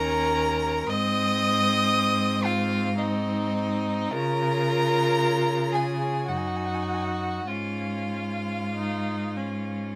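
Close, detailed microphones and a light reverb give this fragment of a classical string quartet movement an intimate, finely etched sound. It is slow and romantic in 3/4, with a rubato feel and a lyrical, tender mood. Across the full 10 seconds, the first violin carries the melody between Eb5 and Eb6 with a smooth top and a singing vibrato, while the second violin sits farther back with a smooth second line. The viola, placed near, offers even accompaniment with only light vibrato, and the cello anchors the bass with a rich, bowed tone. The harmony settles on Ab before moving through Db and Ebm/Gb to a closing Db/Ab.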